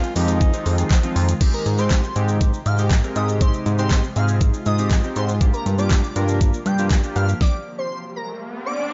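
An airy, dreamy synth lead carries the melody from 1.5 seconds in this energetic, bittersweet dance-pop excerpt at 120 BPM in 4/4, its soft, mellow tone coloured by chorus, dub echo, vibrato and portamento. It takes over from a brief, breathy alto saxophone phrase heard only at the opening, close-miked and intimate with its own dub echo, alongside a very quiet, dark pluck playing arpeggios. Underneath, a fat, detuned analog bass and a smooth R&B drum kit sit up front, the kit built on a knocking kick, fat snare, handclaps, shaker, hi-hat and crash. A glossy, retro polysynth and an ethereal pad with ensemble chorus, phaser and reverb fill in the harmony, and they pump with the bass through sidechain compression over chords moving from Fm7 to Abmaj7 to Gm7. At 7.4 seconds the band drops out, and from 7.7 seconds an electronic riser builds up front alongside the lead in a digital ambience.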